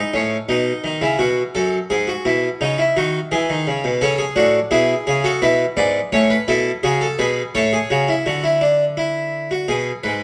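Elegant and joyful, this baroque-style three-part fugue for solo harpsichord moves at 85 BPM in a straight 3/4, in A major with the instrument tuned to A4 = 439 Hz. The Flemish-style harpsichord, with its three sets of strings, sits up front and sounds brilliant, airy and full, its plucked tone spanning F#2 to D5. The harmony passes through E, E/G#, A and E7/B before a new section begins at 8.3 s, turning toward D and then G#m. Close, detailed microphones catch every note, while a moderate recital hall reverb of 1.4 s gives the sound a gentle sense of space. Lasting 10.2 seconds, this brief excerpt is cut from a longer piece.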